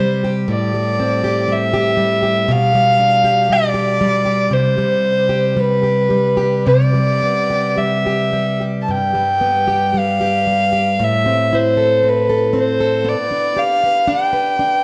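A dark, warm production with a moderate scoring-stage reverb frames this pastoral, nostalgic Celtic slow air, cut from a longer piece and played with a free, rubato feel. A single bowed fiddle carries the melody up front throughout, woody and smooth on top with light vibrato. A picked, plugged-in parlour steel-string guitar with fresh strings accompanies just as closely, its harmony moving from Am7 through C5 and G7 to settle on G.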